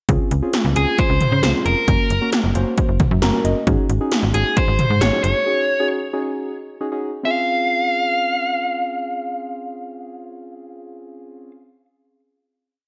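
Nostalgic and upbeat, this short synth-pop piece has a bright 1980s-style digital sheen and a lush hall reverb around it. Punchy electronic pad drums with a gated snare and toms, metallic hats and an overdriven edge drive a drum-machine beat with syncopated toms, joined by a snappy, sequenced FM bass with a metallic attack, both sitting up front until they stop at 5.3 seconds. Muted, felt-like synth keys with a chorus effect play soft, syncopated chords in close voicing underneath and add a short fill around 3.0 seconds. From 0.8 seconds a dark, smooth overdriven lead guitar with delay carries hook-like motif phrases over a progression moving from Dbmaj7 through Gb to Ab7sus4. The piece settles at 7.3 seconds on a final Dbmaj7 chord held by the keys and guitar.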